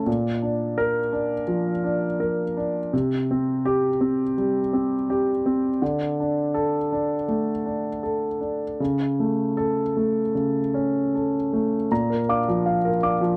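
Played in a loose, rubato 4/4 that breathes freely, this brief cut from a longer neoclassical minimalist piece sets a melancholic, wistful mood on a solo grand piano. The instrument sits close and up front, its clear, polished tone carrying long sustain while audible action noise lends an intimate edge, all wrapped in light reverb within a dry 1970s-style studio sound. The harmony drifts from Bb through C5, D5 and A/C# before settling back on Bb at 11.9 seconds.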